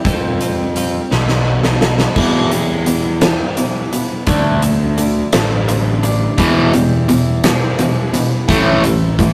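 A slow 6/8 pulse at 57 BPM, counted in dotted quarters with a straight feel, drives this anthemic, restless stretch of quiet-loud alternative rock, cut from a longer piece. A clean, compressed twelve-string electric guitar opens with twangy arpeggios in the background, joined almost at once by a growly, fuzz-laden picked bass and a huge arena drum kit set up front, with a punchy kick, fat snare, bright cymbals and a pumping hall sound. A drum fill from 1.1 seconds carries the harmony from Fadd9 and B7 into Em. At 2.2 seconds a crunchy overdriven guitar riff arrives behind the mix as the chords move through Em and D5. At 6.4 seconds a distorted guitar riff pushes up front, heading toward A5. The rough rehearsal-room recording, with tube saturation and a moderate booth ambience, gives the whole passage a raw, close edge.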